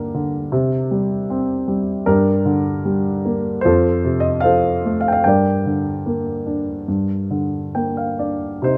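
Closely miked with light reverb, this brief passage cut from a longer classical piece sets a dark, mellow grand piano up front, its short sustain giving each note a natural clarity. Playing alone in a lyrical, rubato style, the piano spans from low F2 to G5, moving through Gm, C5 and F harmonies before returning to Gm in a melancholic mood. A short piano fill at 7.3 seconds rounds off the phrase.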